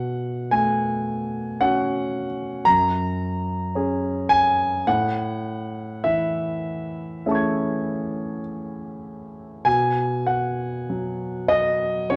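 An intimate concert grand piano with deep bass and audible action noise plays alone, up front, in this mysterious, wistful 12-second fragment of impressionist classical solo piano, drifting in rubato 3/4 at around 49-56 BPM through Bsus2, F#add9, Amaj7 and B5 harmonies, its sound tinged by worn, warbling cassette tape pitch drift and a moderate large-studio reverb.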